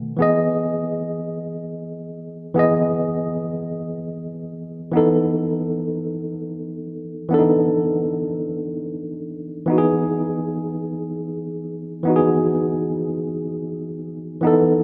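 A worn, lightly overdriven tine electric piano plays alone in free time, sitting up front and sounding slightly out of tune, as if heard through built-in speakers. This romantic, smooth soul excerpt in E major moves from Emaj7 to B7/E at 4.9 seconds and back to Emaj7 at 9.7 seconds, spanning B2 to D#5. A moderate, lush hall reverb surrounds the piano in a rough home-demo mix, and the piece is cut from a longer whole.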